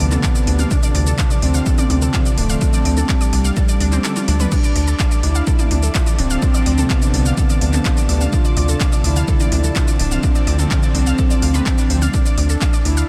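A smooth, mellow portamento lead with vibrato and tape echo sings over this melancholic, hypnotic melodic techno excerpt, joined by bright, detuned unison pluck arpeggios, brassy analog pad stabs, a morphing, warbling wavetable pad with phaser in the background, a tight sawtooth sequencer bass and a punchy, up-front analog kick, with sidechain pumping on the lead, pads, pluck and bass, plus a tape-tinged techno kit of crash, claps, smooth hats, shaker and toms whose fill takes over when the kick drops out from 4.0 to 4.5 seconds, all bathed in a dreamy, huge ambient reverb.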